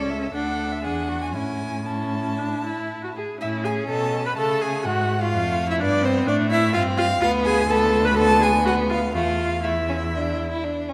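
A moderate concert hall reverb, about 2.0 s long, surrounds this short excerpt from a quick classical-period movement for string quartet in A major. The mood is cheerful and spirited, moving at 116-129 BPM in 4/4 with a rubato feel. The first violin carries the melody with a rich, focused tone and vibrato, while the second violin plays the second line, also bowed with vibrato. The viola supplies clear, intense accompaniment with an airy bow, and the cello sits up front on the bass, expressive, with soft attacks and portamento. All four players sound together from the start. The harmony passes through D, E7 and A before a new section at 3.4 s brings F and D5, and the passage reaches Dsus2/E at 10.1 s.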